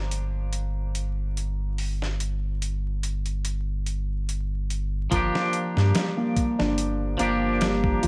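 This trip hop excerpt moves at 72 BPM in 4/4 with a light sixteenth-note swing, sitting in G minor on a single Gm7 chord and carrying a hypnotic, cinematic mood. A twangy, clean electric guitar provides the accompaniment from the start, its picked notes shaded by tremolo and tape echo, while a deep, round dub sub bass holds the low end with a sustained, soft tone. A dusty sampler-style drum kit arrives at 0.1 seconds, compressed and gritty, with a thumpy kick, a fat snare and hi-hats thinned by high-pass filtering inside a small room ambience. At 5.1 seconds a felt-muted upright piano joins with mellow, intimate arpeggios, its dark, thick-felt tone roughened by vintage 12-bit sampler grit and trailed by digital delay. Light reverb, digital ambience and a layer of vinyl crackle give the whole recording a worn, atmospheric sheen.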